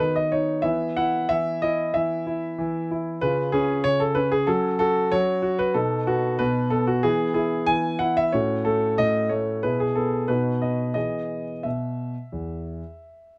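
A solo concert grand piano, up front and natural-sounding with a deep bass, plays a cheerful, elegant classical-period sonatina passage with a flexible rubato feel, captured close and in fine detail in a dry room for about 13.3 seconds as a fragment cut from a longer piece.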